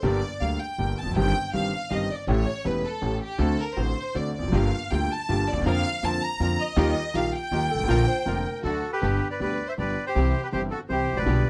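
A rubato 3/4 tango at 160 BPM in G minor, this nostalgic, elegant passage opens with a lush, vibrato-rich violin section carrying a bowed second line, a dark, smooth-topped clarinet adding brief classical phrases, a clear, up-front grand piano with deep bass and audible action noise, and a woody, thumpy pizzicato upright bass on gut strings. Veiled, con sordino chamber strings enter with soft stabs in the background at 4.5 s. At 8.6 s a reedy, airy bandoneon takes the melody up front as the harmony moves from G minor through D to G and C, all captured with close, detailed microphones and light reverb.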